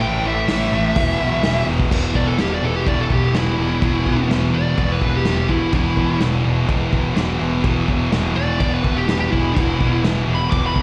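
Heard through a live venue's PA with recital-hall reverb, this excerpt of menacing, swaggering garage rock sets a bright, double-tracked fuzz riff guitar up front over a growling, overdriven picked bass, with a muffled, lo-fi vintage drum kit joining at 0.5 s and a dark, compressed fuzz lead guitar breaking into a solo at 1.9 s, both guitars carrying slapback echo.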